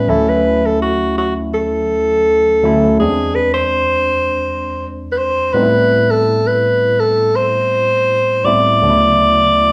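An unhurried 82 BPM soul groove in 4/4 carries a light sixteenth-note swing, setting a romantic mood across this short cut from a longer piece, with the chords moving from Dmaj7 through E7b13 and Am9 to Dmaj13. Up front, a solo alto saxophone carries the melody in a breathy, subtone, pop-style voice that is punchy yet smooth on top. Beneath it, a worn, slightly out-of-tune tine electric piano plays a clean, barky accompaniment through its built-in speakers, and both parts sound like a band playing live together in one room, bathed in wet, large studio reverb.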